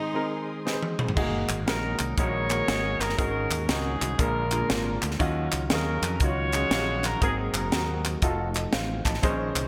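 Hopeful and uplifting, this uptempo gospel cut swings at 119 BPM, opening with a brief break where a breathy tenor saxophone note with delay and dark, lush strings sit over clear concert grand piano and a mellow tonewheel organ with fast rotary speaker and key click, before a crisp fusion drum fill at 0.7 seconds leads into the full groove. From 1.2 seconds a punchy, bright fingered electric bass joins, close and dry handclaps follow at 1.5 seconds, and together with the up-front drums with gated reverb and a high-tuned snare they drive the band, while a dark, tight horn section with delay enters at 1.7 seconds to carry the melody over rich chords such as Gb69, Ebm9 and F7b9. The polished 1980s-style digital production wraps the parts in a moderate plate reverb and small room ambience.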